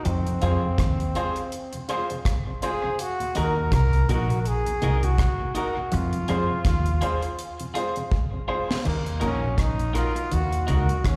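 Swung sixteenths in 4/4 set the pulse for this hypnotic, laid-back roots reggae excerpt from a live gig in a recital hall, where a brilliant, punchy trombone sings the vibrato-tinged melody through dub echo, a dry kit with a high-tuned snare, tight kick, rim clicks and crash plays a fill at 8.1 seconds, a woody pizzicato upright bass sits up front, a dark envelope-filtered guitar riff and a mellow, lightly overdriven tonewheel organ with slow rotary hover in the background, and a twangy clean electric guitar and an open-sounding upright piano add accompaniment and stabs as the chords shift between Fm and Ebm.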